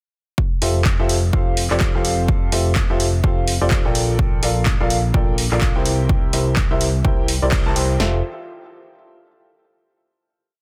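The recording is dense and heavily limited, with little reverb, so this uplifting piano house piece sounds close. At 126 BPM in 4/4 with a swung sixteenth feel, a punchy analog drum machine starts at 0.4 seconds, laying a four-on-the-floor kick and snare with a tape-warm tone re-recorded in a small room, while a second drum machine part adds programmed handclaps and open hi-hats as the backbeat. A clear, woody upright piano sits up front and slightly detuned, playing dotted-rhythm chords in close voicing, pushed through sidechain pumping, a low-pass filter and digital delay. Beneath it, a fat analog bass of detuned sawtooth and square waves follows the chord rhythm with a fast attack, sustained notes, a filter sweep and a moving notch, and it also pumps with the sidechain. The joyful groove moves from Fmaj9 through Bbmaj7 to C7, with a band accent at 7.5 seconds before a final chord arrives at 8.0 seconds.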